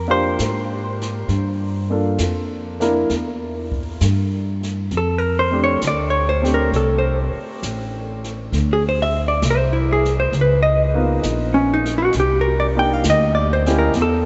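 A clean, compressed hollow-body jazz guitar takes an up-front solo over woody pizzicato upright bass from the very start of this melancholic, smoky jazz ballad at 66 BPM with a lilting swing; a warm grand piano accompanies, and a brushed drum kit with a boomy kick enters at 0.4 s, all set in a vast, echoing cathedral space as the harmony drifts through chords such as Ebmaj9, F6 and Db13.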